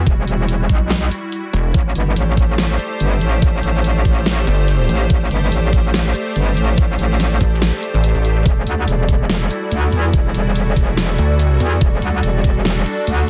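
Chaotic and heavy, this half-time wobble dubstep excerpt in E minor runs at 143 BPM, with a metallic, saturated wobble bass and an overdriven, knocking electronic kick pushed up front beside a dubstep kit of huge snare and bright hats, while a pulsing, mellow pluck wobble bass bursts in briefly at moments such as 1.5 and 7.4 seconds. Beneath them an evolving, morphing wavetable pad holds sustained chords moving from Emadd9 to Am7 and back, its sidechain pumping and ensemble chorus shaping the motion, and from 2.1 seconds an airy, breathy pad with a nasal edge hovers in the background. The mix is dense and heavily limited, with little reverb.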